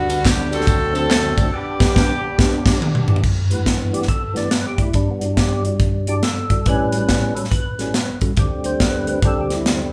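Soulful and uplifting, this uptempo gospel passage in G major moves at 140 BPM in 4/4 with a swung eighth-note feel, heard as a cut from a longer piece. A warm horn section carries the melody at the outset, sounding distant and roomy with light vibrato, while tambourine and handclaps add a close, group-clap sparkle in the background until 1.5 seconds. A mellow tine electric piano sits in the background with a clean accompaniment, and a fat, percussive tonewheel organ holds sustained chords through overdrive and a slow rotary speaker. The crisp fusion drum kit is up front and polished, with a punchy kick, medium-tuned snare and airy cymbals, driving a band accent that leads into a drum fill and electric piano fill around 2.4 to 3.2 seconds. From 3.2 seconds the organ takes a solo over rich chords such as G69, Em9/G and A13, moving toward suspended D harmonies, all captured as a band playing live in one large studio room with moderate reverb.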